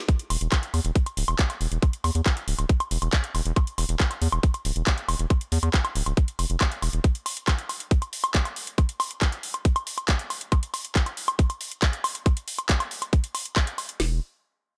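A straight 4/4 pulse at 138 BPM drives this psychedelic trance excerpt, as a garage drum kit with a tight kick, woody snare and metallic hi-hats runs from 0.1 s, layered with a second kit part of handclaps, hi-hat and woodblock, both up front and electronic. A round, deep analog bass built from square and sine waves, wave-folded and evolving with a fast attack and sustained, mellow tone, enters at 0.3 s and holds until 7.0 s, returning briefly at 14.0 s. The mood is driving and alien, set in a digital ambience and cut from a longer piece.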